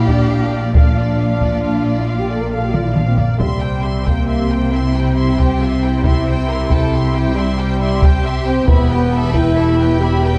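A heroic, relentless passage of epic orchestral film score, cut from a longer piece, opens with the full ensemble sounding together: a lush violin section carries the melody high above while a second, close chamber violin line sits in the background and a smooth, even viola section fills in the accompaniment. Beneath them, a distant, roomy French horn section holds sustained chords, and a close cello section and a dark, bowed double bass section anchor the low end with rich vibrato. A taiko ensemble struck with heavy sticks drives the music at 91 BPM in a straight 12/8, with a drum fill from 2.7 to 3.4 seconds leading into a harmonic shift from Bb to C, before the chords turn to Em at 8.7 seconds. The drums fall away at 9.8 seconds, leaving the strings and horns to ring on briefly. A moderate scoring-stage reverb and a dark production give the whole passage a broad, weighty, cinematic sound.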